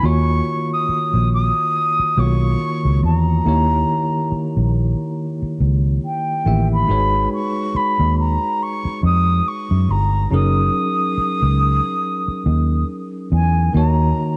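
A slow 70 BPM groove in 4/4 with a gentle 16th-note swing carries this late-night, longing contemporary R&B excerpt in Eb minor, moving through Ebm9, Eb7b9, Abm7 and Gb69 before settling on Ebm7. An airy, straight-toned concert flute sings the melody between G5 and Eb6 with a soft attack and a distant, tape-echoed glow, over bell-like, clean tine electric piano chords and a round, punchy, foam-muted fingered electric bass sitting darkly up front. Light reverb and small-room ambience frame a dusky home cassette sound, with the flute and piano carrying the cassette tape's character, and the bass drops out at 14.1 seconds just before the other parts end at 14.4.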